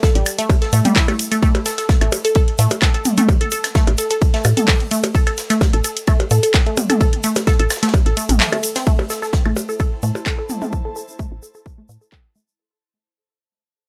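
This minimal techno excerpt opens at 129 BPM in A minor with a punchy, tape-warm electronic kick up front, a squelchy, resonant blip pluck riff treated with phaser, tape echo and sidechain pumping, a grainy egg shaker, and a very quiet acoustic rock kit of hi-hat, ride and snare sounding from a big room. A woody, round FM bass with sidechain pumping joins almost at once, alongside a layered house kit of handclaps and hi-hats with low-pass filtering on its hats, snare and room, plus electronic claves, percussion blips and toms carrying tape echo. The mood is sparse and clinical, with the kick, bass, house kit and pluck sitting prominently in a dry, gritty hardware sound with light reverb. The kick drops out from 8.4 to 8.9 seconds, and at 8.9 seconds the music settles on A minor as a filter sweeps over the bass and the whole track begins to fade. An ethereal, airy pad with ensemble chorus, phaser and its own reverb drifts in faintly at 9.7 seconds as the excerpt fades away.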